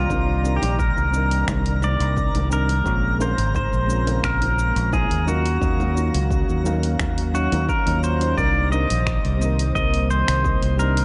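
A bright, clean pedal steel guitar sings the melody with slide and volume swells over a mellow, breathy pad, a round, punchy fingered electric bass and a twinkling granular shimmer in this relaxed sunset chillout excerpt in C phrygian at 87 BPM. Soft, dark electric-piano-like synth keys with chorus and tape echo join almost at once, along with a punchy layered electronic kick and a deep house kit of cabasa, finger snaps and hi-hat, while very quiet, distant low-tuned bongos play until 8.0 seconds. Cm9, Bbm9 and Ebm9 chords drift under an echo-heavy mix of digital ambience, and the sparkling texture drops out at 8.4 seconds as the harmony returns to Cm9.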